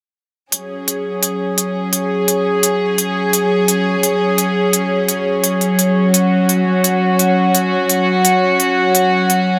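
Half-time drum and bass at 171 BPM with a lightly swung sixteenth feel, this cinematic, heavy fragment cut from a longer piece pairs a close, up-front string section, bowed sul tasto with a soft attack into pure, floating sustained chords on F#5, with a crisp, layered electronic hi-hat re-recorded in a small room, both entering at 0.5 seconds inside a huge ambient reverb.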